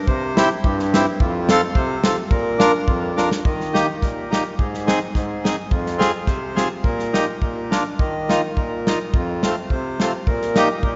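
Jolly and festive, this short fragment of alpine dance-band folk in a loose, rubato 2/4 features a reedy, hollow accordion up front carrying the accompaniment over a close acoustic country drum kit of hi-hat, medium-tuned snare and tight kick, with a drum fill at 3.2 seconds leading into a new section at 3.4 seconds, all set in a wet concert-hall reverb with a muted top end.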